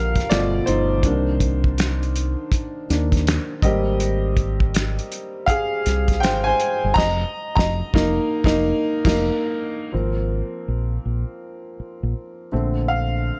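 A woody, smooth upright piano with long sustain opens this relaxed, sensual neo-soul R&B excerpt at 81 BPM, carrying the lead over a round, punchy fingered electric bass as the harmony moves from G7 through Cm7 and Abmaj7. A cloth-damped, thuddy drum kit with dark cymbals, a fat snare, tight kick, hi-hat, crash and finger snaps enters at 0.2 seconds, lending a swung sixteenth-note feel in a small room, and the band hits an accent on F7sus4 at 7.0 seconds before the drums drop out at 9.3 seconds. The piano and bass then close on vintage-toned Ab69 and Bbmaj9 chords, all parts sitting up front.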